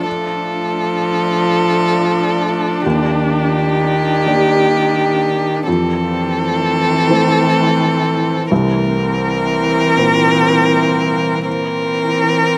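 A clear, focused violin carries the melody up front with vibrato in this reflective, melancholic neoclassical piece at 42 BPM in 6/8, played rubato with uneven beats, over a soft felt-muted upright piano with audible action noise, a distant, expressive viola with portamento, an intense cello as the second line, all three strings touched by slapback echo, and a deep, moody ambient pad with chorus sustaining chords in the background through Bbmaj7, Ebmaj7, Fmaj7 and C7 under light reverb.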